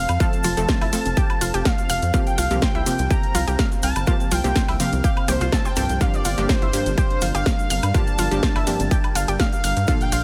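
Progressive house in a straight 4/4, euphoric and hopeful, this excerpt moves from F through C7sus4 to Gm7 as an expressive, nasal synth lead with vibrato carries the melody, joined by a soft, gritty supersaw on a second line in the background, both trailing dub echo. A shimmering, ethereal pad with granular texture holds sustained chords beneath bright, detuned unison stabs and round, wave-folded analog arpeggios, while a tight sawtooth sequencer bass drives from the start, all pumping against the sidechain. A tape-flavoured house kit with a cracking snare and a grainy tube shaker enter at 0.1 seconds, a punchy, up-front electronic kick arrives at 0.2 seconds, and dry, overdriven congas set back in the mix follow at 0.4 seconds.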